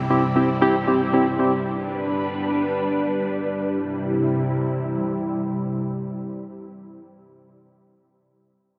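Soaked in a huge, dreamy reverb with a long ambient tail, this short pop fragment in free time drifts by in C major with a carefree, summery mood, moving from C to G and back to C. A lush, vintage string machine sits up front with slow-attack ensemble chords thickened by a sub octave, phaser and ensemble chorus, holding from the opening until 6.9 seconds. Round, mellow analog keys with a detuned, chorused tone add brief accompaniment with a fast, decaying attack, sounding only from 0.1 to 1.5 seconds.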